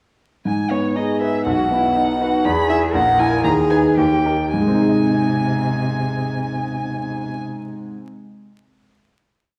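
Quick, dramatic classical-period movement for piano trio, where a rich, expressive violin carries the urgent melody with vibrato and portamento over the clear, vintage grand piano's long-sustaining broken chords and a focused, smooth-topped cello counter-melody, the theme slowing from 2.0 seconds before settling on a final chord at 4.5 seconds in a reverberant hall with vinyl crackle.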